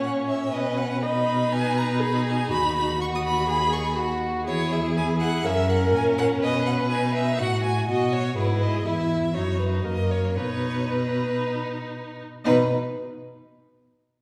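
A reverberant recital hall fills this short fragment, the listener placed further back in the room so the strings arrive with a soft halo of echo. It is a quick, cheerful and graceful classical-period movement for string quartet in a straight four-beat metre, cut from a longer piece. The first violin carries the melody up high with a warm, close tone, vibrato, gentle attacks and expressive portamento slides, while the second violin plays a focused, more distant second line beneath it with a rich sheen. The viola supplies smooth, even accompaniment sitting near the front, and the cello anchors the bass up front with a full, resonant sound, its own soft attacks and sliding, expressive phrasing. All four bowed players sound together from the opening until 12.7 seconds, with the harmony settling repeatedly on its home chord before a new passage begins at 12.5 seconds.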